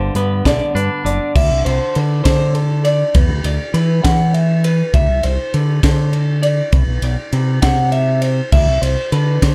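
A clean, compressed electric guitar with a twangy edge opens alongside slightly broken-up arpeggios from a second guitar with subtle chorus and a growling, overdriven fingered bass, while a crisp fusion kit with a high-tuned snare and tight kick joins at 0.2 seconds. The first guitar drops out at 3.1 seconds, leaving the bright, playful math rock and midwest emo figure to move through Esus2, Dsus2 and Cmaj7 at 67 BPM in a lilting 6/8. The bass and drums sit up front in a dark, dry production cut from a longer piece.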